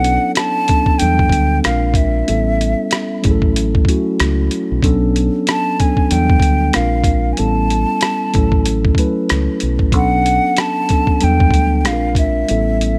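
R&B and neo-soul in B minor at 94 BPM with a swung sixteenth feel, sultry and introspective, where a breathy, hollow silver concert flute with vibrato carries the melody up front over a clean tine electric piano moving through Bm9 and Em11 chords, a dark, round fingered electric bass, and a gritty, pitched-down boom bap sampler-style kit of thumpy kick, hi-hat and rim click, heard in a dry room with little reverb.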